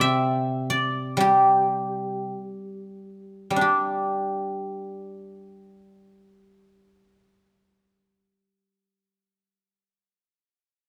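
Elegant and flowing, this short excerpt of Chinese traditional music features a solo guzheng, silvery and ringing under fingerpicks, played up front with close, detailed clarity and light reverb in a free rubato that slows over the opening 3.6 seconds before a second section unfolds across its C3 to C6 range.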